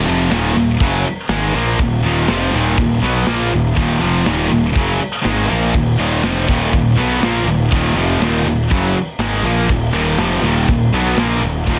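A straight 4/4 pulse carries this heavy, epic metal fragment, with two distorted electric guitars, one high-gain and one tight, both bright and up front, playing a riff over a single minor chord while a fuzzy, growly overdriven electric bass sits warmly underneath. An acoustic drum kit with a big-room sound, a medium-tuned snare, a tight kick and crash cymbals joins at 0.3 s. Light reverb and a dense, heavily limited modern master keep the sound thick and forceful through this 11.8-second cut.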